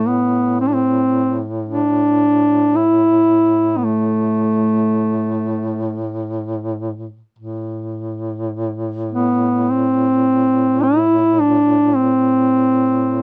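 This Caucasian folk lament in A minor unfolds in free time with a solemn, mournful mood, in a 13.2-second fragment cut from a longer piece. Two mellow duduks play throughout: one carries the melody up front, with scooped notes and a smooth top, while the other holds a soft, present low drone colored by vibrato. The passage shifts into a new section at 7.4 seconds, and the dry, close 1970s-style studio sound keeps both folk-style instruments intimate and near.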